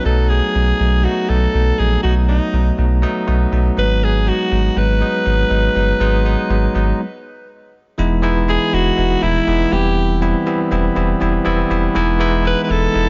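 A romantic, nostalgic 1980s-style pop excerpt in which a raspy, gritty alto saxophone carries the close-miked solo melody through a digital delay, over bell-like tine electric piano accompaniment and a round, deep sub bass, with a stop from 7.0 to 8.0 seconds before the harmony settles onto Emaj7 at 8.0 seconds, all in a studio ambience that rolls off the highest frequencies.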